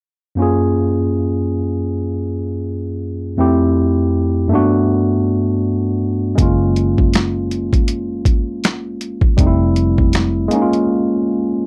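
A barky tine electric piano opens this smooth, sensual neo-soul R&B passage at 0.4 seconds, playing alone through lush ninth chords. The piano is bright and lightly overdriven through a combo amp, sitting up front. At 6.4 seconds a dark, round, foam-muted electric bass and a gritty boom bap sampler-style kit enter together under a swung sixteenth-note feel, with the bass adding a punchy, amped low end. The compressed, overdriven kit brings a thumpy kick, a medium-tuned snare, hi-hat and finger snaps, re-recorded in a small room and placed up front. The drums drop out at 10.9 seconds for a brief break where the electric piano carries on by itself, and the whole cut has the dry, close feel of a 1970s studio with light reverb.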